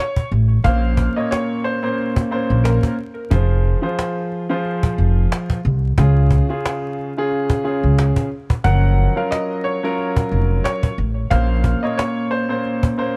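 Dark, dry production dusted with vinyl crackle gives this reflective, gritty boom-bap hip-hop fragment a light swing. A brilliant, worn and slightly detuned upright piano carries the melody through filtering and analog delay, dropping out at 2.9 seconds and returning at 8.6 seconds. Beneath it sit an up-front cajon struck with hard hands and faint snares, a woody pizzicato upright bass on steel strings, and a mellow, vintage baby grand piano whose long sustain fills in chords moving from B-flat minor through F minor, D-flat and G-flat major seventh.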